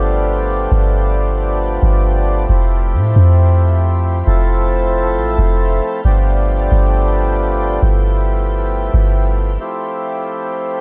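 A reedy, mellow accordion holding sustained chords and a deep, round 808-style bass open this blissful, floating cloud-rap fragment at 135 BPM in a half-time feel, drifting between G9 and Fmaj9 in F lydian with a dry, dark production until the bass drops out at 9.6 seconds and the accordion carries on alone to 10.8 seconds.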